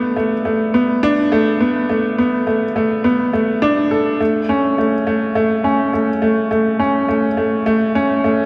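A clear, woody upright piano plays alone from 0.0 to 8.5 s, sitting up front with its mechanical action audibly clicking beneath notes that stay between A3 and A4. This melancholic, intimate electronica excerpt moves at 104 BPM in a straight 4/4 and serves as a build-up. A wet scoring-stage reverb with a 2.0-second decay surrounds the piano, and a faint mains hum lies under the sound.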